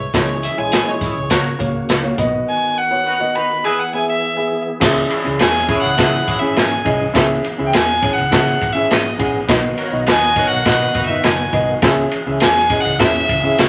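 Uptempo 1960s-style soul in C# dorian at 103 BPM, this driving, urgent clip from a longer piece opens with an earthy, up-front fiddle taking a solo for the first 4.8 seconds, its bowed line carrying light vibrato and a smooth top. Underneath, a crunchy breakbeat kit sits forward with a tight kick, medium-tuned snare, dark cymbals and a gritty, saturated edge, while a vintage muted fingered electric bass adds a round, amped low end. A worn concert grand piano supplies accompaniment with deep bass, and a tonewheel organ holds very quiet sustained chords with key click and fast rotary shimmer. A distant, roomy horn section plays a second line from 0.7 to 11.2 seconds, lending light vibrato and ensemble weight. The harmony moves through C#m, F#/C#, B and E before circling back to C#m, all set in a wet studio reverb.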